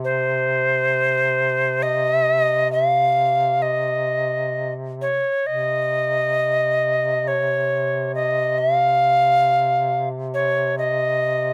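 An alto recorder and a mellow duduk sound together from the first moment of this short cut from a longer Caucasian lament, a longing, solemn piece of folk music in a free, rubato triple metre. The recorder carries the melody up front with a pure, woody tone, soft attack, chiff, vibrato and lifted highs. Beneath it the duduk holds a low, distant drone with its own vibrato and scooped notes, all captured dry in the open air.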